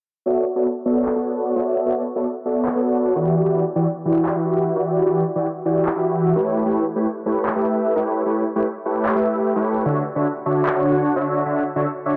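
Huge, bright, detuned supersaw chords open at 0.3 s in this bittersweet future bass clip at 150 BPM in a half-time feel, moving from Em9 to A9 to Dmaj7 under subtle chorus, tape echo and a filter sweep, while layered electronic handclaps sit low in the mix from 1.1 to 10.7 s, all bathed in a wet, lush hall reverb.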